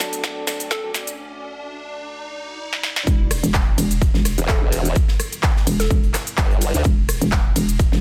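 Bass house at 127 BPM in E minor, bouncy and swaggering, opens on a D chord build-up where a moody, detuned pad sits in the background beneath a brief nasal organ stab, an electronic riser, a crisp, overdriven big-room kit with drum fills, a punchy up-front kick and a hollow square pluck, before the drop on Em at 3.1 seconds brings in a knocking FM bass with sidechain pumping, a very quiet airy studio kit, and from 4.4 seconds a saturated, bright formant-sweep wobble bass, all within a dense, heavily limited modern master.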